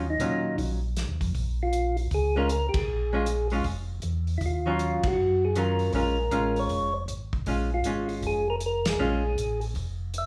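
A mellow, round tonewheel organ opens the bass line with a slow rotary speaker and audible key click, alongside a dark, clean archtop guitar comping with picked, hollow-body chords. Just after, a second tonewheel organ takes the melody with third-harmonic percussion and its own slow rotary speaker, and a soul drum kit settles in with hi-hat, kick, snare and ride. This bluesy, soulful soul jazz organ trio swings at 157 BPM in 4/4, moving between Ebm9 and Bbm7 in Bb minor. The band hits shared accents at 2.7, 5.0 and 8.8 seconds, and the guitar drops out at 9.2 seconds while the organs and drums carry on to the end of this short cut from a longer piece. The organs and guitar sit up front, while the acoustic kit sounds like a small room, with a tight kick, medium-tuned snare, dusky cymbals and a rolled-off top, all under a light studio reverb.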